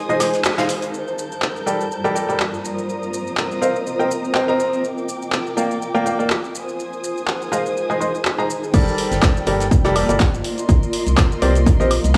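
A swung 4/4 groove drives this energetic, soulful piano house passage, with a tape-warm analog drum machine laying down crash, handclaps, hi-hat, shaker and woodblock from the opening moments, while a very quiet brushed kit adds airy hi-hat and snare in the brief opening break and again at the drop. A bright, intimate baby grand carries the riff up front, its action noise audible and its sound shaped by a low-pass filter and analog delay. Beneath it, a dark, woody string section holds distant, bowed chords with vibrato, and a cloudy granular pad drifts with a slow attack and a blurred, detuned texture, both breathing with sidechain pumping. The harmony moves through Gmadd9, Cm7, Bb6 and Ab, and at 8.7 seconds the drop arrives as a punchy electronic kick and a hollow, organ-like FM bass with a fast, decaying attack join the groove. The gritty hardware sound sits in a lush hall reverb, and the clip is cut from a longer piece.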